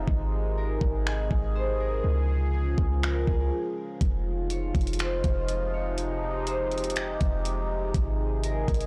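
This is an atmospheric cloud-rap hip hop excerpt at 122 BPM in 4/4, played with a half-time feel and carrying a blissful, floating mood. A concert harp carries the melody with an acoustic, fingerpicked, ringing tone and a delay trailing each note, while a sweeping resonant pad holds sustained chords built from detuned sawtooth and triangle waves that are wave-folded and evolve through a filter swell, slow attack and long release, colored by chorus and phaser and pumped by sidechain. Underneath, a clean 808-style bass sits up front with a deep, boomy, dark sine tone that hits with a fast attack and decays, roughened slightly by transformer saturation. The smooth R&B drum kit enters at 0.1 s with finger snaps, metallic hats and a knocking kick, sounding electronic, produced and tape-warm, with soft clipping on the snare. The opening four seconds form a break, the chords move from Ab to Db, Fm7 and back to Ab, and the whole excerpt sits in a blown-out, overdriven recording with a digital ambience.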